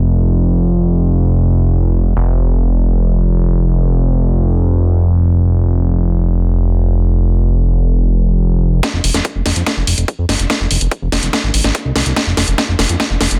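A straight 4/4 psychedelic trance pulse at 144 BPM sets a hypnotic, alien mood as a fat, detuned sawtooth analog bass with a filter sweep runs alone up front from 0.0 seconds, until at 8.8 seconds a tight, tape-warm electronic kick with a high-pass filter and a layered techno kit of cracking snare and warm, low-passed hats, re-recorded in a large room, join for a drum-fill build-up in this dry, dense, heavily limited cut from a longer piece.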